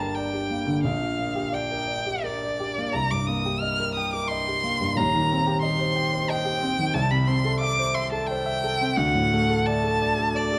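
Tender and warm, this romantic classical excerpt for violin and grand piano moves at 88 BPM in a rubato 3/4, its harmony drifting from G minor through C minor toward a closing D chord. A rich, focused solo violin sings the melody high in its range with vibrato, while a clear, polished grand piano supplies accompaniment with long sustain, spanning from deep bass to the upper middle register. Both instruments sit up front throughout the 10.6 seconds, framed by a moderate recital hall reverb.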